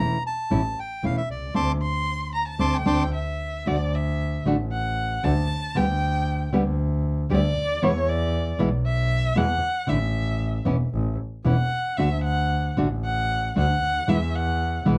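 A warm, bowed violin enters at 1.8 s and carries this tense, sultry tango fragment, taking a solo from 3.7 s, where the music settles into D major, with expressive vibrato and portamento from a distant position. A reedy, close-miked bandoneon voices the opening melody until 3.0 s, while a fingerpicked nylon-string guitar with audible finger squeak and a biting, earthy bowed double bass play throughout, with the band accenting together between 1.6 and 3.7 s. The rubato feel hovers around 116 BPM in 4/4, with light reverb and a dark overall production.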